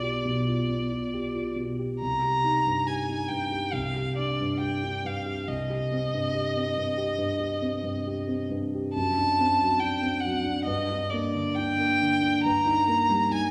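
A single bowed violin leads this melancholic, yearning romantic classical duo, its rich, smooth tone carrying an even, vibrato-laden melody that sits between D5 and Bb5. A dark concert grand piano supplies the accompaniment, its mellow voicing reaching down to a deep bass at B1 and up to G4. Both instruments play together throughout, from 0.0 to 13.5 s, in a single section of this fragment cut from a longer piece. Set in C minor and 4/4 at 69 BPM, the performance moves with a flexible rubato feel, the harmony passing from G7/B through Cm and D7/F# to Gm before settling on Eb/G. The recording places both players up front in a church or concert hall, wrapped in a wet reverb with a 2.1-second decay.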